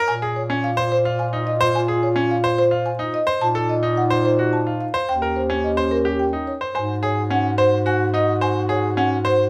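A straight 3/4 pulse at 108 BPM drives this hypnotic, propulsive passage of minimalist classical pattern music in Bb minor, cut from a longer piece. A brilliant, up-front grand piano spins arpeggios with long sustain and audible action noise, while a woody, round marimba played with soft mallets carries the melody, a clear French horn with light vibrato sits in the background on a second line, and a mellow, roomy bass clarinet anchors the bass. Light reverb surrounds the ensemble as the harmony moves from Bb7sus2 through F7/Bb and Eb7 to Ab7sus4, with a new section arriving at 6.7 seconds.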